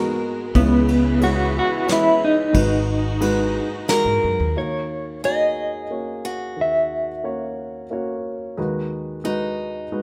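A clean, dark-toned electric guitar carries the melody with tremolo, sitting up front in this reflective, melancholic excerpt from an acoustic folk-pop ballad, until it falls away at 8.2 seconds. Beneath it, a baby grand piano plays intimate, short-sustained accompaniment throughout, its boxy tone and audible action noise lending a close, private feel. Smooth bowed studio strings with light vibrato hold chords through the opening section and drop out at 4.5 seconds. In that same opening stretch, a woody, thumpy pizzicato upright bass and a soft brush kit of tight kick, medium-tuned snare and ride cymbal give the 90 BPM pulse in 3/4 its gentle footing. From 3.9 seconds, a bright parlour-style steel-string acoustic guitar picks arpeggios that carry the second section over minor chords moving from G#m9 through D#m7, all set in a light reverb.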